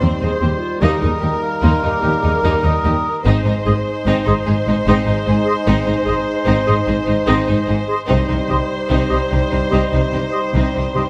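Heroic adventure film score in a rolling 12/8, cut from a longer piece, with an adventurous, triumphant mood as a lush, vibrato-rich violin section carries the melody over Eb, Ab and C minor harmonies. A second violin line, hollow, airy flutes, a smooth-topped oboe and a background clarinet weave supporting lines, while clear violas accompany, a punchy French horn section holds sustained chords and a distant, roomy trumpet adds stabs. Cellos and expressive double basses anchor the bass, timpani on Eb3 from 0.8 to 1.4 seconds mark the opening, and a moderate scoring-stage reverb gives the ensemble a spacious sheen.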